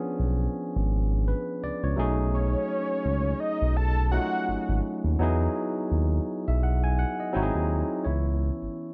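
A fat, warbling analog lead with chorus and vibrato carries a brief melody from 2.3 to 4.8 seconds in this introspective, soulful neo-soul R&B fragment, cut from a longer piece and set at 84 BPM in C# minor with a swung sixteenth-note feel. Beneath it, a bright, barky tine electric piano, lightly overdriven through a combo amp, plays the accompaniment over C#7b9, B13, Emaj9 and G#7b13 before landing on C#m7. A smooth, detuned synth bass sits up front in the low register. The production is dark and dry, with lossy compression artefacts.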